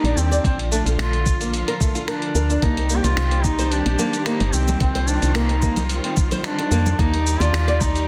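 Dense, heavily limited and lightly reverberant, this hypnotic, meditative organic downtempo piece sets a distant, roomy duduk melody with vibrato and scooped notes and tape echo over lush bowed symphonic strings that pump with the sidechain, fingerpicked flamenco guitar arpeggios with audible finger squeak, and an up-front, woody, round FM bass, while a dusty, gritty, sampler-style kit of cabasa, finger snaps and hi-hat swings gently, a thumpy electronic kick joins at 0.4 s, and close, dry bongos and congas played with hard hands sit in the background from 2.6 s.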